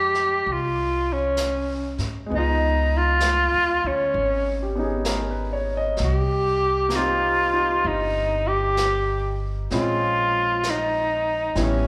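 Late-night and intimate, this swung jazz ballad fragment unfolds slowly in a reverberant recital hall. A breathy tenor saxophone carries the melody up front, its mellow subtone, soft attack, vibrato and scooped notes giving it a whispered, vintage character. A clear concert grand piano accompanies with a polished, present tone, deep bass and short sustain. Beneath it, a woody, thumpy upright bass played pizzicato on gut strings sits close, while a distant, roomy brush kit enters at 0.1 s with brushed snare and hi-hat, its top end rolled off. The harmony drifts through Fm9, Db9, Cm7 and Bbm9 before the fragment ends at 11.9 s.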